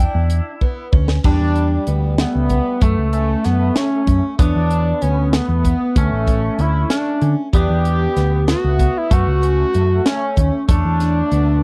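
A screaming, saw-edged overdriven synth lead carries the melody up front in this driving, brooding progressive instrumental in 5/8 at 191 BPM (eighths), set in E dorian, opening with a short solo phrase while the tight funk drum kit, which enters at 0.3 s, rolls through a fill from 0.6 to 1.3 s. A dark, round hollow-body bass sits up front alongside the high-tuned snare and tight kick, while a clean, twangy electric guitar adds a second line and a shimmering, octave-doubled twelve-string acoustic fingerpicks arpeggios with slapback echo in the background. Chords move through Em7, F#m, E5 and D5, and the dry, close 1970s-style studio sound makes this cut from a longer piece feel intimate and immediate.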